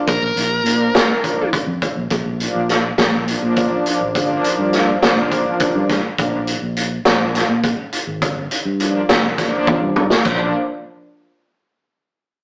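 Intricate and bright, this progressive instrumental band piece moves in 7/8 at 206 BPM counted in eighths, with a straight feel in Bb major, and it is cut from a longer piece. A brassy, detuned sawtooth pad with chorus and tremolo holds sustained chords from the start, shifting between Bb and Gm7, while a dark, overdriven lead guitar sits up front for a brief picked phrase on Bb4 that ends at 1.5 s. A punchy, amped fingered electric bass anchors the low end, and a vintage acoustic drum kit, gritty with dark cymbals, a medium-tuned snare and a tight kick, drives the groove and plays a fill from 9.7 to 10.3 s. A grainy egg shaker is barely audible beneath the kit. The whole recording has a rough rehearsal-room character, with tube saturation, a small-speaker tone and moderate studio reverb.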